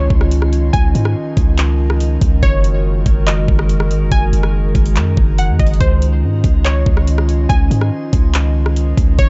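A half-time 4/4 pulse at 142 BPM drives this blissful, dreamy cloud-rap excerpt in Db major, with an up-front electronic trap kit of knocking kick, metallic hi-hats, handclaps and rim clicks entering at 0.1 s over a deep, mellow sine 808-style bass. A warbling, nostalgic lo-fi pad with chorus, reverb and sidechain pumping sustains the Dbmaj9 and Gb69 chords, while a crystalline, detuned wavetable pluck carries the melody through chorus, low-pass filtering and digital delay. Behind them, a calm texture of drifting glassy harmonics floats in the background, and a barely audible electronic impact marks the opening 0.7 s of this dark, warm mix.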